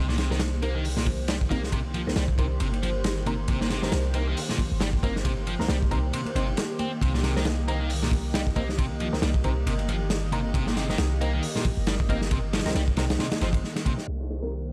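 A dry, gritty, low-passed recording carries this funky, swaggering breakbeat cut, where an up-front, saturated breakbeat kit with a tight kick and dark cymbals sits alongside a deep, boomy 808-style bass, an overdriven picked guitar riff through analog delay, a swirling, sidechain-pumped phased pad on a sustained Cm7, a nasal, band-passed chord stab under a filter sweep in the background, and very quiet, ringing congas.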